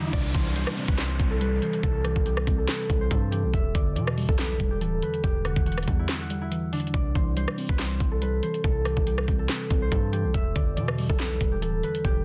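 A concert harp and muted, felt-like synth keys open this menacing, melancholic trap excerpt, joined by riser and downlifter effects that sound until 3.5 seconds. The harp carries the melody with a fingerpicked, ringing tone washed in digital delay, while the soft, dark keys, thickened by chorus, fill in the accompaniment beneath it over chords moving between C and Em7. At 0.1 seconds a distorted, heavy 808-style bass and an up-front trap drum kit arrive, setting a half-time feel at 141 BPM with a knocking kick, sharp snare, metallic hi-hats, handclaps, rim clicks and crash cymbal. The bass sounds aggressive, its sine tone carrying a noise layer, a fast attack and a decaying tail. A brief break from 6.1 to 6.9 seconds interrupts the groove, and the effects return at the very end, all within a dense, heavily limited modern mix and a digital ambience.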